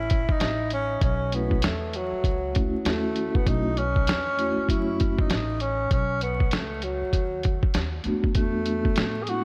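A swung 98 BPM groove in 4/4 comes from a compressed, pitched-down, sampler-style drum kit with a thumpy kick, medium-tuned snare and hi-hat, setting up a smooth, cool jazz-hop cut from a longer piece in B mixolydian. A woody pizzicato upright bass anchors the low end while a breathy, whispered tenor saxophone carries the solo melody up front with light vibrato, scooped notes and a diffuse ambient delay, and a mellow soft-mallet vibraphone with fast motor vibrato joins at 1.3 seconds. The harmony rests on B9sus4 before moving to E9sus4 at 8.1 seconds, all set in a small room with light reverb and vinyl crackle.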